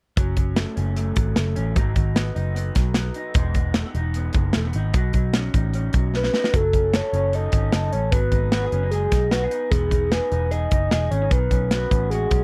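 Jangly indie pop at 151 BPM in F# dorian, restless and bittersweet, where a dark, slightly broken-up electric guitar through a small old amp picks subtly chorused arpeggios beneath a round, foam-muted vintage bass and a punchy, up-front modern studio drum kit, until a drum fill at 6.1 seconds brings in a soft, octave-layered synth lead with chorus, phaser, vibrato and slapback echo carrying the melody over the F#m, G#m7, Emaj7, Badd9 cycle in a dry, close 1970s-style recording cut from a longer piece.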